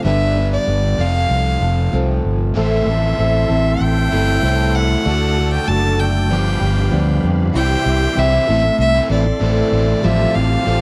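A clear, earthy fiddle carries the melody up front, a single bowed player heard close in this hopeful, jangly rock excerpt at 96 BPM in G major. Beneath it, a round, dark fingered electric bass sits prominently in the mix, while a full-bodied jumbo steel-string acoustic guitar supplies picked accompaniment, complete with audible finger squeak. A bright, crunchy overdriven electric guitar, double-tracked, drives a riff throughout. From 2.6 seconds, a reedy musette accordion joins in the background, its wet tuning giving the sustained chords a shimmering quality. The harmony moves through G, F, Am, D and G7 before shifting at 7.6 seconds to C and Am and landing on Fadd9/A, all captured in a dry, close 1970s-style studio sound with little reverb.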